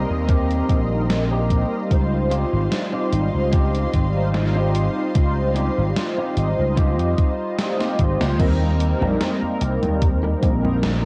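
Worn cassette tape gives this short cut from a longer vaporwave piece a warbling pitch drift and a light reverb, leaving the mood faded and dreamy. At a relaxed 74 BPM in 4/4 with a gentle swing on the sixteenths, it sits in Eb mixolydian, moving from Eb6 to a lingering Dbmaj9#11 and back to Eb6 when the second section begins at 8.4 seconds. Up front, a dark, round synth brass carries the accompaniment with ensemble chorus and tape echo. Beside it, an amped, punchy vintage slap bass holds the low end. A rich, smooth studio string section sustains chords with light vibrato until 8.4 seconds. An electric guitar at the edge of break-up picks a compressed riff through analog chorus and tape echo. Underneath, a thumpy electronic kick and a gritty 12-bit gated 80s drum machine playing congas, crash, hi-hat and a gated-reverb snare keep time, with a drum fill just before the section change.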